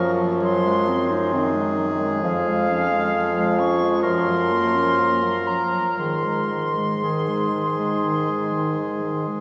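Classical wind quintet in a slow romantic movement, this serene passage unfolds at 58-67 BPM in 4/4 with a rubato feel, a brief fragment cut from a longer piece. The silver concert flute carries the melody up front between F5 and Db6, its pure, straight tone and crisp attack giving the line an expressive, metallic sheen. Beneath it the oboe sings a warm second line, while the dark clarinet, with its smooth top, and the mellow French horn, soft in attack with light vibrato and a roomy, distant quality, fill out the accompaniment. The clear bassoon anchors the bass with its own light vibrato, all five instruments playing together across the full 9.4 seconds. The harmony moves from Ab7/Gb through Db/F and Gbmaj7 to Ab, heard through a wet church reverb with vinyl crackle.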